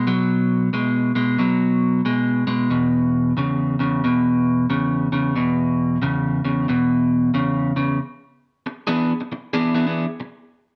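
A dark, slightly broken-up electric guitar, picked, compressed and up front with spring reverb, plays alone from 0.0 to 10.2 seconds in this laid-back, swaggering blues fragment at 91 BPM with a swung feel in E mixolydian, moving from B5 to E5 at 2.7 seconds and landing on E7 at 8.0 seconds inside a moderate club-sized room.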